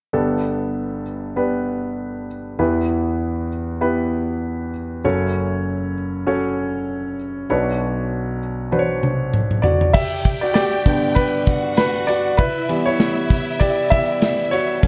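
A concert grand piano opens this dramatic, driving piano-led pop piece at 98 BPM in 4/4, with a light swing on the sixteenths. The piano sounds intimate and polished, up front with deep bass and audible action noise, and it carries the chords Gadd9, Em, F#m and Bmadd9. At 8.7 seconds a modern acoustic drum kit enters with a fill, sounding dark and smooth with a tight kick, a medium-tuned snare and a rolled-off top, set close in a small room. From 9.9 seconds, over G and Em, the piano takes a solo while a lush, bowed violin section adds a distant, expressive second line with vibrato. A moderate, large studio reverb gives the mix a sense of space, and the passage is cut from a longer piece.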